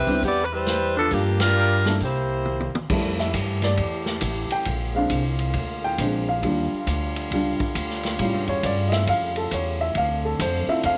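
Swinging in 4/4 at 136 BPM in F major, this energetic, brassy big band excerpt opens with a clear, up-front saxophone section carrying the melody over woody pizzicato upright bass, a dark baby grand piano with audible action noise, and a vintage drum kit with dark cymbals and a punchy kick. A band accent lands at 1.3 seconds, background trumpet stabs arrive at 1.6 seconds, and a drum fill from 2.5 seconds leads at 2.9 seconds into an intimate, mellow piano solo over soft-attack trombone chords through light studio reverb.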